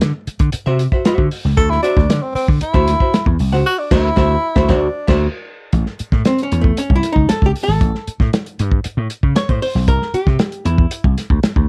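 A breathy tenor saxophone carries the melody from 1.6 to 5.2 seconds, its soft attack, vibrato and scooped notes giving a jazz-inflected lead to this funky, strutting funk cut taken from a longer piece. Underneath, an amped vintage slap bass sits punchy and up front, while a lo-fi, muffled soul drum kit with dark cymbals, a medium-tuned snare and a tight kick keeps a straight 4/4 pulse at 116 BPM. A clean, picked archtop guitar with a hollow-body tone comps in the middle register, then takes over as the featured voice in a solo from 5.7 seconds, as the harmony moves from D9 to A and later C9. The whole band accents from 3.7 seconds up to the moment that solo begins. Light reverb and a dark, warm production shape the overall sound.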